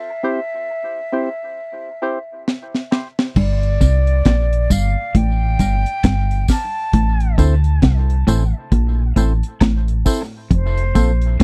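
A round, punchy fingered electric bass and a dry, dark reggae drum kit with a high-tuned snare and tight kick sit up front in this meditative, spacious dub reggae excerpt at 67 BPM in G dorian, with a swung 16th feel and the full groove arriving at 3.4 seconds after a drum fill. Above them, an airy, distant concert flute carries the melody from the start, while hollow, percussive organ stabs with chorus, a high-pass filter and dub echo mark the chords through C, Gm, Am and F under a filter sweep. A clean semi-hollow electric guitar riff with spring reverb and dub echo sits in the background alongside soft tambourine and woodblock, all captured in a close, dry 1970s-style studio sound, and one part is muted from 10.5 seconds.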